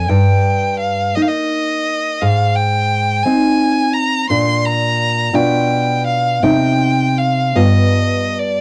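Solemn and yearning, this short cut from a longer romantic duo for violin and classical guitar moves at a slow 57 beats per minute in dotted quarters, in a flexible, rubato 6/8. A single bowed violin carries the melody between D5 and C6 with a rich, focused tone and vibrato. The nylon-string guitar, fingerpicked in a classical manner, supplies a dark acoustic accompaniment from G2 to F4, sitting slightly louder than the violin, with an audible finger squeak. Both instruments sound close and up front, with light reverb and the soft grain of a home cassette recording, tuned a touch sharp to A4 = 441 Hz. The harmony passes from Eb/G through Ab and Bb to G7/B, settles on Cm at 6.4 seconds, and closes on G7 at 7.6 seconds.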